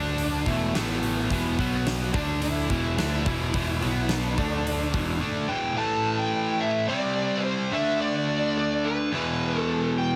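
A straight 4/4 pulse drives this heavy, menacing hard rock fragment, cut from a longer piece. A huge arena drum kit rings out in a hall, with a fat snare, punchy kick and hi-hat, while a bright, growly electric bass plays direct and picked down low. Up front, a cranked stack guitar picks out a double-tracked, overdriven riff through power chords such as E5, A5 and B5. Above it, a smooth lead guitar with a warm, picked and driven tone carries the melody. The bass drops out at 5.2 seconds and the drums just before it, leaving the two guitars to carry the second section over chords like C5 and D5 until the cut at 10.2 seconds. The mix sits in a small room and is heavily compressed, giving it a radio-like sound.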